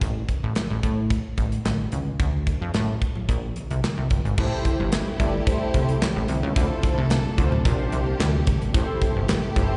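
Slick and late-night in mood, this short excerpt of early-eighties boogie funk moves at 110 BPM in a straight 4/4, centred on A phrygian. A plucky analog bass sits up front from the start, punchy and funky with a fast-attack filter pluck on sawtooth and pulse tones, while an acoustic drum kit with a tight kick, medium-tuned snare, hi-hat, handclaps and crash cymbal drives alongside it. Low-tuned congas with a thick skin sit very quietly and distant in the background from 0.3 seconds. At 4.4 seconds the harmony shifts to Am7, and a mellow synth brass enters, round and dark with detuned sawtooth tones, a filter sweep, chorus, phaser and slapback echo, together with a lush symphonic string section playing bowed, sustained chords with vibrato and a soft attack. The whole thing sounds like a live gig heard through a venue's PA, with small room ambience, recital hall reverb and a dull top end.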